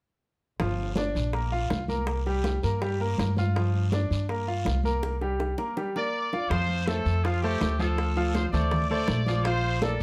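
This festive, joyful salsa excerpt opens with a bright, brilliant, polished baby grand piano playing accompaniment up front, present and intimate, with audible action noise and short sustain, over a woody, dark pizzicato upright bass that sits prominently in the mix. Tight, high-tuned bongos and a raspy guiro sound close and dry, while thick-skinned, medium-tuned congas with soft hands stay in the background. The harmony alternates between Gm7 and C5 before a break with a drum fill arrives at 5.0 s. At 6.0 s a punchy, vintage trumpet section enters up front with the melody, tight and pop-styled with vibrato, as the chords move to Fadd9 and Bbmaj7. A moderate studio reverb surrounds the ensemble.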